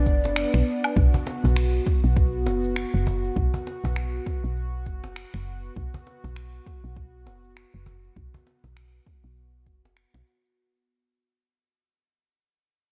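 A swung sixteenth-note groove at 100 BPM in 4/4 drives this short organic downtempo fragment in B minor, tuned slightly low to A4 = 438 Hz, with a warm, mystical mood. An up-front electronic kick gives a deep, layered pulse, while a deep house kit adds smooth hi-hats, cabasa, finger snaps and woodblock, and a snappy acoustic cajon with snares sits in a small room. Underneath, an FM bass with a woody, round tone and fast, decaying attack holds the low end between F#1 and B1. A detuned sawtooth-and-triangle analog pad sustains chords on B5 with a soft attack, long release, chorus shimmer and sidechain pumping. A breathy, close-miked ney with vibrato and delay appears only in the opening 0.6 seconds, sitting in the background. The whole passage fades out across its 10.6 seconds, wrapped in a dark production with light reverb and digital ambience.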